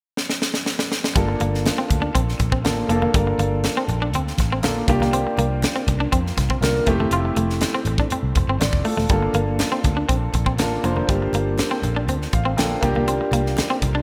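Polished 1980s jazz-funk pop in G dorian at 121 BPM, with a bittersweet, urban mood, this excerpt opens on a drum fill from a crisp fusion kit with a high-tuned snare, tight kick and gated reverb before the band enters at 1.2 seconds over Gm7, C7sus4 and Fmaj7. A dark, foam-muted fingered bass anchors the low end while an intimate grand piano, boxy with audible action noise and lush chorus, comps up front beside a twangy, slightly broken-up electric guitar riff and very quiet, low-tuned congas that join at 1.4 seconds. The piano adds a fill at 12.1 seconds, all set in a bright digital production with small room ambience.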